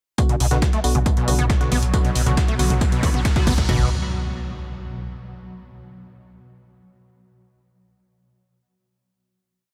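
A straight four-on-the-floor kick from a punchy, overdriven analog drum machine, with its crash, drives this short, dark peak-time techno build, joined by the same machine's hats and toms, a gritty looped breakbeat from a dusty soul sampler-style kit in the background, a round sine sub bass, a squelchy distorted acid bass riff and crisp detuned wavetable chord stabs that both get a filter sweep, a swarming granular drone from 0.8 seconds, and a drum fill from 1.9 seconds, before the build gives way at 3.7 seconds to a closing section carried by a background riser and impact.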